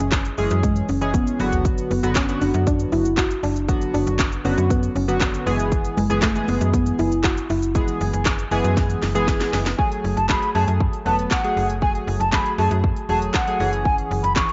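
This energetic, driving dance-pop excerpt in F# minor opens with a soft, round synth pluck carrying the melody alongside glossy, retro synth keys, a snappy FM bass with a metallic attack, and a punchy house drum kit of kick, cracking snare, crisp hats, handclaps, shaker and toms. At 118 BPM in a straight 4/4, the keys and bass pump against the kick, while the dark, chorused pluck carries a slapback echo over chords that move from C#m/F# through Bm/F# and E/F#. Drum fills mark 1.1 seconds and the lead-up to the change at 9.8 seconds, where the pluck has already stopped at 9.2 seconds. From 9.8 seconds a mellow, hollow concert flute takes over the melody in its upper register with vibrato and tongued notes, also pumping and echoed, over an F#madd9 chord before returning to C#m/F#. The mix sits in a moderate spring reverb with a soft, rolled-off top end, the drums and keys placed up front.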